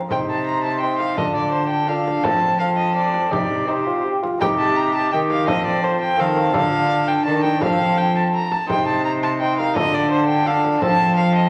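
Courtly and solemn, this short passage cut from a longer piece is a renaissance-style consort dance in C dorian, moving at 168 BPM in a straight 3/4. Up front, a single bowed violin carries the melody with an airy, nasal gut-string tone, while a dark, punchy cor anglais with light vibrato adds a second line close beneath it. A mellow, soft-attacked bassoon fills the middle accompaniment, and a bowed cello with a reedy, smooth-topped timbre anchors the bass. In the background a delicate fingerpicked lute with double strings begins at 0.0 s, just ahead of the other parts, and a frame drum played with soft hands keeps a close, gentle pulse until 11.0 s. The harmony circles through Cm, Dm and F across two statements of the same section, set in a wet recital hall reverb with vinyl crackle.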